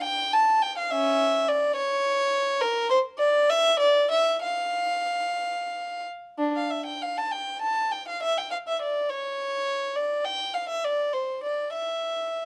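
A lone bowed violin with a rich, reedy gut-string tone sounds close and up front from the first moment, playing a grave, introspective baroque-style suite movement in a rubato 6/8 at 60-72 dotted-quarter beats per minute, ranging from C#4 to A5 in period style, with a phrase stated at the start and again from 6.4 seconds, all set in light reverb with a dark production.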